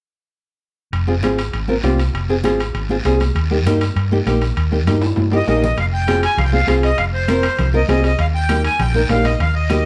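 A reedy, slow-beating accordion takes the melody at 5.3 s in this passionate, fiery cumbia excerpt in F minor at 198 BPM, moving between Fm and Eb chords. Up front beside it, a woody, fingerpicked nylon-string guitar on old strings and a dark, round, punchy hollow-body electric bass carry the groove, while bright, high-tuned congas with hard hands sit in the background, a vintage metal-shell timbale rings, and a raspy guiro stays close and dry. The band plays live in one large studio room with moderate reverb, and a drum fill leads into the second section.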